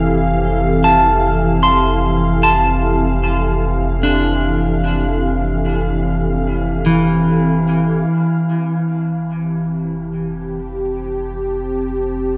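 A clean electric guitar sits up front, its picked arpeggios trailing dub echo until it drops out at 10.6 seconds. Beneath it, an analog pad holds sustained chords over an Fmaj7, its detuned sawtooth tone smoothed by chorus, a soft attack and a long release. An organ-like drone with a warbling, vintage character adds calm, detuned unison layers through ensemble chorus and its own reverb before stopping at 8.2 seconds. Meanwhile, a round sine sub bass anchors the low end. From 8.1 seconds the pad and sub bass fade in as the music moves into a new section. This weightless ambient fragment, cut from a longer piece, is bathed in a wet echo chamber and the soft haze of cassette tape.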